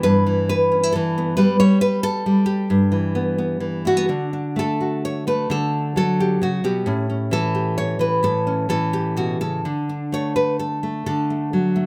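A fingerpicked nylon-string guitar sits up front with a warm, classical tone, carrying this hopeful, pastoral solo folk excerpt in D major. In a loose, rubato 3/4 that hovers around 124-138 BPM, it opens on Em/G before settling onto D at 4.1 seconds, moving through A7 and returning to D by 9.7 seconds. A light reverb gives the recording a gentle sense of space.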